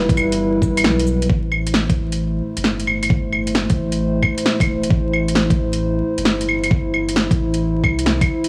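Nocturnal and melancholic, this short cut from a longer future garage piece moves at 133 BPM in 4/4 with a 66% swing on the sixteenths, sitting in A minor with tuning slightly below standard at A4 = 437 Hz. A dark analog pad holds sustained chords up front, its nasal, detuned tone colored by chorus and pumped by sidechain, moving from a G chord to A minor at 1.3 seconds. Beneath it, a soft dub sub bass gives round, deep low notes with transformer saturation and the same sidechain pumping. An overdriven electronic kick knocks in the foreground, dropping out from 0.8 to 1.3 seconds before the change, while a gritty garage kit of woody snare, metallic hi-hats, cabasa and claves adds layered, overdriven percussion. The sound is dry and hardware-rough, with vinyl crackle and studio ambience giving the track a dusty late-night feel.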